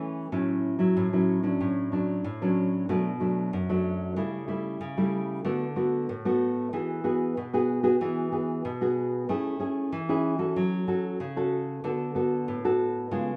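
A solo nylon-string guitar sits up front, its classical, thumb-plucked tone sounding warm on fresh strings as it carries a festive, joyful samba in a straight 4/4 feel, tuned slightly below standard pitch. The chords move through rich colours such as F#m7/A, Dmaj7/A, Eadd9 and Amaj7 before settling on D6. A moderate large-studio reverb gives the live-room recording an airy sense of space in this passage cut from a longer piece.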